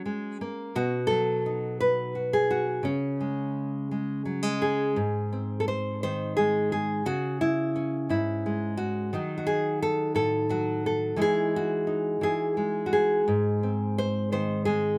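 A fingerpicked nylon-string guitar, full-bodied and up front with audible finger squeaks, carries this haunting, melancholic folk excerpt alone in a slow, rubato 6/8, its classical touch drifting through minor and diminished colors before settling on an Emaj9 and a closing G# chord, all framed by light reverb in an open outdoor setting.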